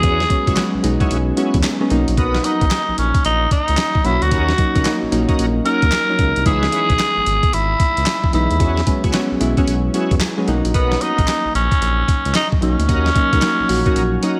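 Punchy and slick, this new jack swing R&B cut moves at 112 BPM in 4/4 with a 64% swing on the sixteenths, taken from a longer piece. A raspy, vintage-toned tenor saxophone carries the melody up front in a pop style, riding over warm analog keys whose detuned pulse and sawtooth voices carry chorus and a filter sweep, with a brief keys fill at 9.9 seconds. A bright tonewheel organ sits in the background with shouting, lightly overdriven stabs, key click, chorus vibrato and a slow rotary speaker. Underneath, a smooth, mellow synth bass with a wave-folded sawtooth and triangle tone holds the low end until 14.2 seconds. The dusty, sampler-style drum kit is compressed and gritty, with a thumpy kick, fat snare, hi-hat and handclaps given gated reverb and the ambience of a large room, and the kick drops out at 14.0 seconds. Chords cycle through E69, Bmaj7, D#m7 and C#m7 under a light reverb.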